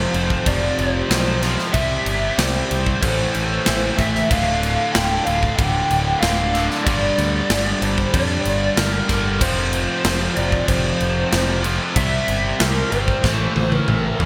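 A bright, 1980s-style digital production with a moderate lush hall reverb gives this heavy, aggressive hard rock cut a big, polished sheen at 94 BPM in a straight 4/4. Up front, a big rock drum kit enters at 0.1 seconds with a punchy kick, a medium-tuned snare, toms and bright crash cymbals in a roomy acoustic sound, closing with a drum fill from 13.2 seconds. A modern picked electric bass, direct and growly, anchors the low end, while three riffing guitars stack above it: a double-tracked, high-gain distorted guitar and an overdriven semi-hollow guitar with lush chorus sit in the background, and a very quiet overdriven electric guitar adds a bright edge. Above them, a lead guitar through a small cranked amp sings the melody with a dark, lo-fi overdriven tone colored by analog chorus and digital delay. A very quiet, moody analog pad holds sustained, detuned sawtooth chords with slow attack, phaser and a sub-octave depth, under a progression that moves from F5 through C, Am, Dm and Gm before returning.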